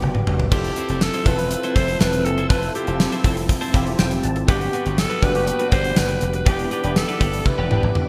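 1980s-style pop with a nostalgic, moody air, cut from a longer piece, built on a gated drum kit with a fat snare and tight kick up front, a dry thumbed slap bass, and a barky, bell-like tine electric piano in ensemble chorus that takes a short fill at 3.5 s. A twangy twelve-string electric guitar riff with subtle chorus sits in the background beside a very quiet, double-tracked overdriven guitar and a glassy, ethereal FM pad holding sustained chords. From 0.5 s a raspy, gritty alto saxophone carries the melody with vibrato and scooped notes, framed by moderate plate reverb and bright digital 1980s-style production.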